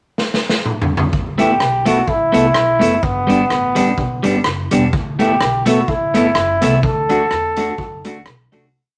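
A moderate club reverb gives this short, complete ska piece a lively room sound, opening with a drum fill on a street-band kit with a boomy kick and side-stick backbeat before the woody upright bass enters at 1.1 seconds with a sliding walking line. At 126 BPM with a light swing, the energetic, driving arrangement sets a bright, roomy trombone out front playing a motif-based melody over off-beat chops from a twangy, slightly broken-up electric guitar and a clean tonewheel organ turning through a slow rotary speaker. The chords move from Asus2 to G and back, landing on D as the piece fades out from 6.8 seconds.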